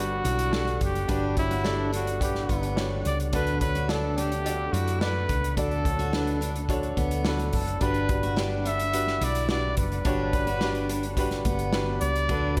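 Bittersweet and dramatic, this piano-driven pop passage is a short cut from a longer piece, moving in a straight four over a Gmaj7 to D6 and back to Gmaj7 progression. A mellow, up-front trumpet carries the solo melody with vibrato and a soft attack, its smooth top touched by slapback echo and delay. A clear, woody upright piano with a vintage character supplies the accompaniment, also with slapback echo, while a round, punchy hollow-body electric bass gives a dark, amped low end. From 0.2 s, a picked steel-string acoustic guitar plays a riff in the background with slapback echo, and an airy, polished country drum kit joins with hi-hat, a punchy kick and a medium-tuned snare set up front. Very quietly underneath, a lightly overdriven tonewheel organ holds full chords with key click, chorus vibrato and a slow rotary speaker, and a lush hall reverb gives the whole mix a big arena sound.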